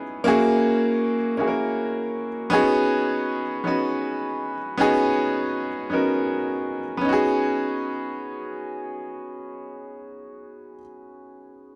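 R&B in B major at a slow 53 BPM in 6/8, this intimate excerpt features a solo baby grand piano, bright and up front with a long natural sustain, moving from F#7 to B69 within the first 2.5 seconds and ringing in a small room's moderate reverb as if played live.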